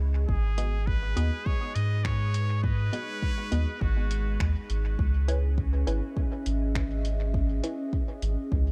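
Ambient dub in C# minor at 102 BPM, with a light swing on the sixteenths, this hazy, deep fragment of a longer piece moves from G#m7 to C#m7 at 5.0 seconds. A warbling, nostalgic pad with chorus and its own reverb holds dark, detuned chords throughout, while a round, soft sub bass sits up front beneath it. A muted trumpet with a nasal, brilliant tone and vibrato sings a solo melody through dub echo from 0.3 to 4.4 seconds. A layered electronic kick gives the groove its weight, and a muffled, pitched-down sampler-style kit adds finger snaps and hi-hat through dub echo. Mellow filtered chord stabs with a plucked, evolving quality drift through phaser and echo, all set in a digital ambience.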